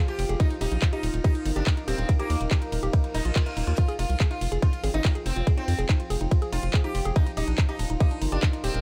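A very quiet, resonant drone with moving overtones and a woody, wave-folded pluck riff open this intense psychedelic trance excerpt, soon joined by a deep, moody ambient pad in the background, a bright, buzzing sitar melody with phaser and tape echo, and a drum and bass kit of handclaps, metallic hats and ride cymbal. A round analog bass and a tight, up-front electronic kick anchor the groove, while sidechain pumping breathes through the pluck, pad and sitar. An electronic reverse cymbal sounds in the background at 3.1 seconds, and a faint, wobbling formant-sweep bass appears briefly at 4.8 seconds in a dry mix.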